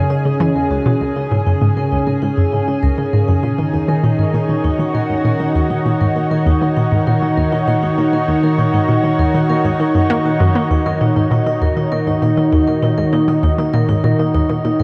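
A thick, warbling unison pad holds sustained chords in Eb minor while a metallic, ringing vibraphone with medium hard mallets fades in across the whole clip with tape-echoed arpeggios, and an up-front analog pluck with a detuned sawtooth bite enters at 0.1 seconds with a chorused, tape-echoed riff. This expansive, hypnotic stretch of sequencer-driven space music moves at 99 BPM in a straight 4/4, shifting from a Db5 chord to Ebm7 at 3.4 seconds. A huge ambient reverb with a 9.0-second tail places the lush pad and round pluck in a vast, echoing space, and the passage is cut from a longer piece.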